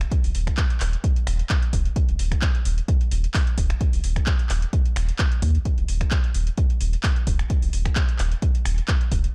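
A punchy electronic kick drum sits up front, its analog thump carrying the air of a large room as it drives this short, hypnotic slice of acid house cut from a longer piece. Beneath it, a round analog bass moves between Eb1 and Eb2, deep and dark with a fast attack and sustained notes, thickened by tube saturation and breathing with sidechain pumping. An electro analog drum machine supplies finger snaps, handclaps and metallic hi-hats, sitting further back than the kick and bass. The groove carries a light swing on the sixteenths, giving the raw pattern a loose, rolling push. Digital ambience surrounds the parts, and the whole stretch stays in a single section from 0.0 to 9.3 seconds.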